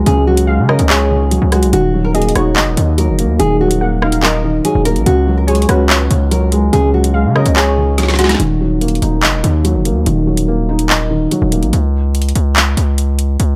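Dark and cold, this half-time drill excerpt pairs a fingerpicked nylon-string guitar melody and a warbling, lo-fi sawtooth pluck in the background, both treated with delay, over a felt-muted upright piano, a heavy, saturated 808-style bass and an up-front electronic kit of woody snare, metallic hats, handclaps and rim clicks, with a drum fill at 8.0 seconds leading into a sparser passage where the guitar and pluck have dropped out.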